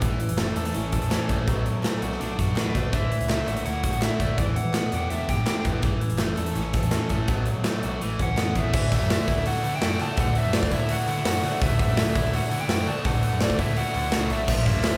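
This excerpt sounds like a band playing live together in one room, with light reverb and a big, up-front acoustic drum kit whose bright cymbals, medium-tuned snare and punchy kick drive the straight four-beat indie rock groove. The mood is wistful yet upbeat. Two electric guitars play riffs throughout: a crunchy overdriven guitar and a fuzz-drenched, compressed guitar sitting further back. Underneath, a round, amped picked bass holds the low end from the background. A very quiet, crisp group handclap sits close and dry in the mix until about 8.5 seconds, returning only for a brief moment at the very end. A dark, smooth overdriven lead guitar carries the melody in a higher register, first entering at 2.6 seconds and returning at 8.2 seconds as the chords move toward a new section.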